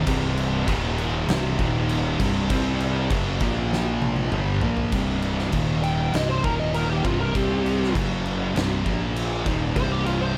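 A dry mix with little reverb frames this ominous, heavy stoner and doom metal passage, cut from a longer piece and moving at 99 BPM in 4/4 in C minor. Three distorted, picked rhythm guitars sit in the background on a riff built around C5, Eb5 and Bb5 power chords: a bright, double-tracked high-gain guitar, a fuzz guitar with a warm tone and a darker fuzz guitar. A growly, punchy fingered bass with overdrive and fuzz anchors the low end. Up front, an oversized low-tuned acoustic kit lays down a boomy kick, fat snare, dark cymbals and toms in a big, pumping room, all saturated and gritty. A drum fill from 3.7 to 4.9 seconds leads into the second section, and at 5.8 seconds a compressed, dusky fuzz lead guitar enters with a solo, colored by wah and digital delay, over chords that add an F#5 and close on Cm.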